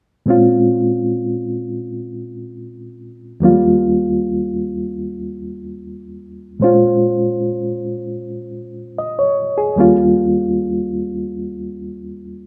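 A moderate stone-room reverb surrounds this live, in-one-room recording, where a solo reed electric piano sits up front, its reedy, worn tone slightly out of tune and heard through its built-in speakers with a harmonic tremolo. In free time and Bb dorian, the soul passage has a silky, smooth mood, moving between Bbm9 and Eb9 from 0.3 s, then repeating that pair in a second section from 6.6 s until the cut at 12.5 s.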